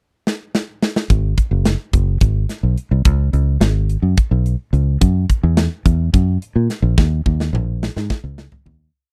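Progressive instrumental band music in a brooding, intricate 7/8 at 214 BPM in G# minor, where a tight, polished metal drum kit opens with a fill at 0.3 seconds before a foam-muted, punchy fingered electric bass enters at 1.1 seconds with a syncopated riff, both up front in a close, dry 1970s-style studio sound until a final drum fill and fade-out from 7.0 seconds.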